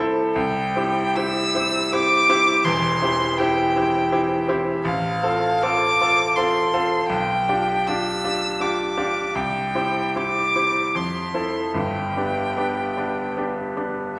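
In a flexible, rubato 3/4 at roughly 72-84 BPM, this serene, lyrical romantic classical duo sets a bright, brilliant grand piano accompaniment, intimate and close with audible action noise and long sustain, beneath a bowed solo violin that sings from 0.3 to 13.3 seconds. The violin's tone is warm, smooth and even, with vibrato in its high register, while the piano spans deep bass to the middle range through a gentle progression from C through F and G7 back to C, closing on Fmaj7 and G. Both instruments sit up front, yet a wet recital hall reverb places the listener further back in the room, in this short passage cut from a longer piece.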